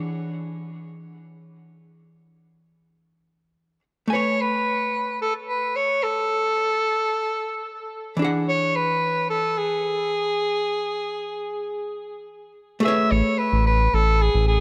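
Drifting in free time, this relaxed, blissful sunset chillout excerpt in A major opens on a clean, hollow-body archtop guitar with tape echo voicing E9 and Amaj9 chords, joined at 4.1 seconds by a clear soprano saxophone melody with light vibrato and delay, while a deep, round analog bass enters on A1 at 13.1 seconds beneath a moderate plate reverb.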